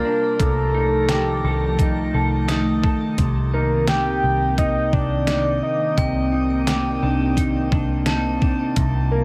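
In this hazy, haunting dream pop piece at 86 BPM in C dorian, a soft octave-layered synth lead carries the melody through chorus and delay, a warbly, nostalgic tape-like pad holds F9/C and then Cm9 with phaser and chorus, clean hollow-body guitar arpeggios are drenched in lush chorus, and a bell-like glockenspiel rings faintly in the background. From 0.4 s an overdriven, detuned 8-bit drum machine with a thumpy kick and fat snare enters up front alongside a round, punchy muted bass, the whole mix bathed in a moderate shimmer reverb.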